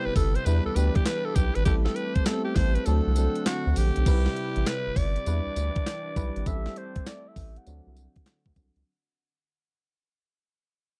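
A raspy, gritty alto saxophone carries the melody in this cut from a confident, punchy new jack swing R&B track at 100 BPM, its scooped notes given a pop edge. Beneath it, a glassy FM electric piano with bell-like attacks and chorus plays the accompaniment, while a smooth, detuned analog pad holds mellow sustained chords in the background. A round, deep analog bass and a crisp 8-bit drum machine sit up front. The drums bring a thumpy kick, snare, handclaps, tambourine, hi-hat and crash, swinging the sixteenths over a cycle of Em7, Am7 and D7 that moves to Cmaj7 at 4.1 seconds. The kick is muted between 2.9 and 4.1 seconds, and from 4.1 seconds a filter sweep and fade-out carry the passage to its close in a dark, dry production.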